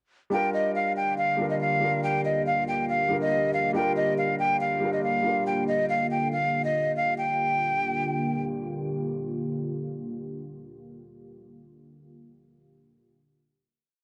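A half-time 140 BPM drill pulse in G minor sets a cold, tense mood for this short hip hop piece. A breathy, close-miked jazz flute with vibrato loops a sampled-style melody over soft, felt-muted upright piano chords with cassette grit. A deep, detuned sawtooth pad with chorus enters at 1.2 s and sustains dark chords through the final chord to 11.2 s, all within a moderate spring reverb and homespun tape character.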